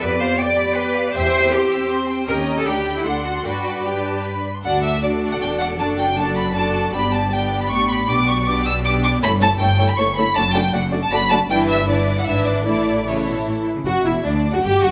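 A lush, up-front first violin section carries the melody of this spirited, cheerful classical-period movement for string orchestra, moving at a quick 157 BPM in 3/4. Beneath it, a focused second violin line with a smooth top, close, even violas in accompaniment, and a bass of focused cellos and smooth double basses all play with bowed vibrato throughout the clip. The music starts in G major and moves to D major at 4.6 s, heard in a recital hall with moderate reverb.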